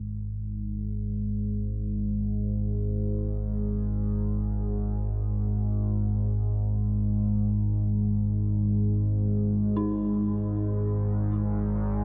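Soaked in huge ambient reverb, this dark, desolate ambient drone excerpt drifts in free time over an up-front analog drone of detuned sawtooth and pulse waves with pulse-width modulation, a moving notch and subtle chorus, sustained mellow and evolving from G#1 to G#2 for the full 12.0 seconds, and at 9.8 seconds a quieter, eerie FM synth bell enters with inharmonic, warbling arpeggios on D#4 and a diffuse ambient delay.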